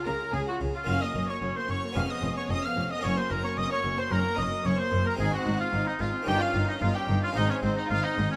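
Close, detailed microphones and a light reverb give this brief passage from a longer baroque-style concerto movement a clear, intimate sound. In a brilliant, festive Db major at 111 BPM in a straight 4/4, tuned slightly low to A4 = 438 Hz, an up-front solo oboe with light vibrato and a vintage, classical-style tone carries the melody alongside a chamber violin section playing higher with gut-string, period-style bowing. A second violin section sits in the background on a supporting line, while a dark, distant viola section and an airy, round harpsichord with one set of strings fill out the accompaniment. From 0.1 seconds, a dark, nasal double bass section and a smooth-topped, reedy cello section in the background anchor the bass. The harmony moves from Db through Gb to Ab and an Eb7 over G before settling back on Ab near 7.4 seconds, giving the phrase a bright, ceremonial lift.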